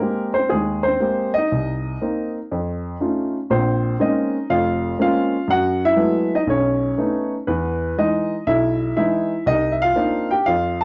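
Playful and warm, this short cut from a longer solo jazz piece features a baby grand piano on its own, natural and up front, swinging in 4/4 across a range from F1 to A5 with a touch of slapback echo, moving through rich chords such as Abmaj9, Bbm9 and Emaj7 as a new section begins at 3.5 seconds, in a dry, close 1970s-style studio sound with light reverb.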